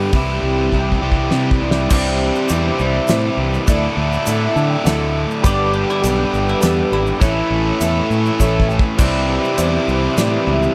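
A light studio reverb gives this short cut from a longer folk rock and heartland rock piece a nostalgic, jangly glow at 102 BPM in 3/4 with a straight feel. From the start, a shimmering, octave-doubled twelve-string acoustic guitar picks its accompaniment in the background beneath an up-front, biting overdriven electric guitar riff, double-tracked, while a fingered electric bass sits direct and forward and a damped 70s drum kit with a fat snare and tight kick drives the pulse, adding a fill from 0.7 to 1.9 seconds. A woody mandolin picks a second line in the background, briefly at the opening and again from 5.5 to 8.1 seconds. At 1.9 seconds a bright upright piano with audible action noise joins in the background, slipping in fills along the way, alongside a very quiet, dark string section holding soft, sul tasto chords with light vibrato and a grainy tube shaker. The harmony moves from Cadd9 through Dsus2, G and A before returning to Cadd9, with a final drum and piano fill leading into that return.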